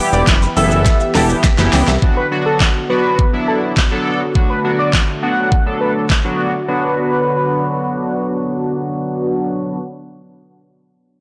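A layered electronic pop drum kit, up front with knocking kick, fat snare, crisp hats, handclaps and shaker, drives this confident, energetic dance-pop excerpt through a drop and a fill ending at 2.0 seconds, where a glossy pulse-wave synth bass and a background crystalline wavetable pluck arpeggio also fall away. A retro chorused polysynth with ring modulation and filter sweeps provides accompaniment while a smooth, detuned supersaw holds sustained chords, both under sidechain pumping, moving from Em to Bm, while the drums drop out at 6.2 seconds and a bold, bright octave-doubled sawtooth lead with vibrato and digital delay carries the melody until 8.4 seconds. Light digital ambience surrounds a blown-out, overdriven sound.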